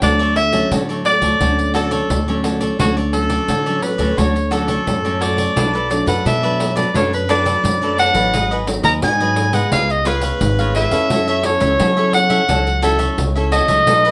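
This joyful, festive excerpt of samba and choro moves at 87 BPM in a straight 4/4. It opens in D major on a Dmaj7 chord and turns to B minor at 5.6 s, passing through Bm7, G#m7, C#7 and F#m7. A clear soprano saxophone carries the melody up front in a jazz style, with light vibrato and scooped notes, its roomy tone set a little at a distance. Underneath, a crisp picked cavaquinho and a bright fingerpicked classical nylon-string guitar play the accompaniment, while a woody pizzicato upright bass with steel strings holds the low end. A jingly pandeiro, played with hard hands in a small-room sound, keeps the percussion going throughout. The whole band sits in moderate studio reverb and is tuned to A4 = 436 Hz.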